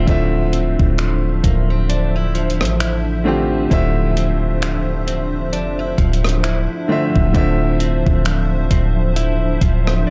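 Longing and moody, this contemporary R&B fragment, cut from a longer piece, sits at 66 BPM in D minor with a swung sixteenth-note feel, resting on a single Dm9 chord throughout its 10.1 seconds. A thumpy, tape-warm 80s drum machine with finger snaps, hi-hat, kick and rim click sits up front beside a deep, round 808-style bass, while a natural grand piano plays accompaniment and a clean, compressed electric guitar picks arpeggios through subtle chorus and digital delay. A hollow, flute-like pad with a vintage warble holds sustained chords under an ensemble chorus, all within a dark, dry production.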